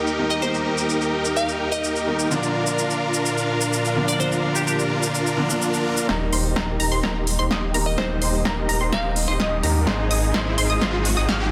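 Festival progressive house at 127 BPM in Eb major, uplifting and euphoric, cut from a longer piece: huge, bright supersaw chords pump against a warm concert grand piano and dark, woody symphonic strings in the background, with a glassy, crystalline wavetable pluck melody and crisp, overdriven dance drums, before a thick detuned saw bass, a lush phased unison pluck arpeggio and a very quiet punchy kick enter at 6.1 s for a build-up with a drum fill and a filter sweep on the supersaws, joined by a background riser at 8.6 s, all under light digital ambience and a dense, heavily limited modern master.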